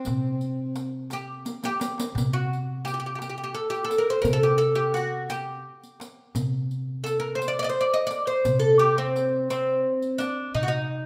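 This Arabic maqam ensemble piece in C maqam nikriz moves at a slow 57 BPM in 6/8, with a longing, melancholic mood across its 11 seconds, cut from a longer work. The fretless oud leads from the opening, plectrum-plucked and up front, its double strings and woody tone giving a bright voice as the melody ranges from C4 to Eb5. Beneath it, a pizzicato upright bass with steel strings holds a woody, warm C3. The percussion stays soft: a very quiet clay-shell darbuka with natural skin sounds close and dry, and a riq adds bright jingles under soft hands. A brief drum fill at 1.5 seconds stirs the gentle pulse, and a moderate recital hall reverb surrounds the group with a graceful sense of space.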